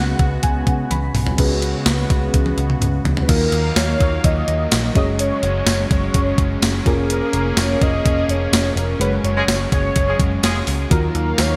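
A straight 4/4 groove at 126 BPM drives this uplifting, romantic 1980s-style pop excerpt in F# major, built on a clean 12-bit drum machine with a thumpy kick, overdrive and gated reverb sitting up front, and a dark, foam-muted picked electric bass. A velvety sawtooth synth lead with chorus and vibrato carries the melody over a mellow FM electric piano treated with chorus and phaser, which plays a fill at the start, and a brassy, detuned analog pad holding sustained chords. A fuzz guitar enters in the background at 3.3 s, a tight horn section adds delayed stabs at 9.4 s during a band accent, and the whole is set in a lush hall reverb with a bright digital sheen.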